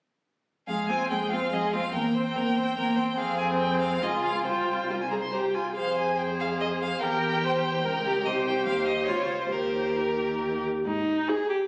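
Stormy and urgent, this quick classical-period movement for string quartet in 3/4 moves at 131-148 BPM with a rubato feel, starting in F minor and turning toward Ab major from 8.2 s, cut from a longer piece. A focused, distant first violin carries the melody above a smooth, even second violin line, while an up-front viola with expressive portamento fills the accompaniment and a rich, distant cello, also sliding between notes, holds the bass until 11.2 s, all four players using vibrato. The sound is a phone recording made in the room, with moderate scoring-stage reverb and a club-like ambience around the ensemble.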